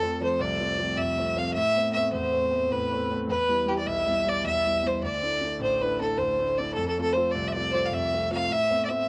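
A fiddle and a concert grand piano begin together at 0.0 seconds in this short Celtic slip jig, cut from a longer piece and set in A minor at 104 BPM in 9/8 with a straight feel. The fiddle carries the melody between G4 and F5, its bowed single voice intense and boxy with a light vibrato, sitting up front and trailed by a cassette tape echo. Beneath it the piano supplies accompaniment from A1 to F4, smooth and vintage in tone with a deep bass, also placed up front. The harmony moves through F, Amadd9, Em and Dsus2 before returning to F at 6.8 seconds and Amadd9 near 8.5 seconds, giving the tune a dark yet lively, spirited character. The whole recording carries the grain of a home cassette, heard in a small, wet booth ambience that keeps both instruments close and clear.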